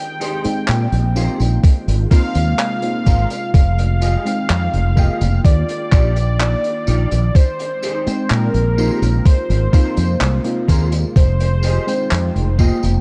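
Faded, dreamy vaporwave cut from a longer piece: a velvety, detuned synth lead with vibrato, chorus and tape echo carries the melody over a round, punchy fretless bass and a thumpy, sampler-style electronic kick that joins up front at 1.6 seconds, while a soft FM electric piano with phaser, a silky string machine holding very quiet chords, a dark clean guitar riff with analog delay in the background, and a gritty, saturated garage kit of handclaps, hi-hat and tambourine fill out a dark cassette-tape sound in a small room.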